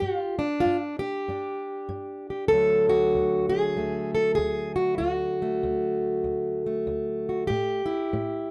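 A fingerpicked steel-string acoustic guitar, plugged in, opens on a G5 chord at 0.0 seconds in this short excerpt of acoustic country blues. The mood is gritty and rollicking, set at 97 BPM in 4/4 with a swung eighth-note feel, in D major. The solo guitar moves to D at 2.5 seconds and reaches A5 at 7.5 seconds, ranging from D2 up to A4. Its tone is boxy with a parlour-guitar character, placed up front in the mix. The sound is dry and close, in the manner of a 1970s studio recording.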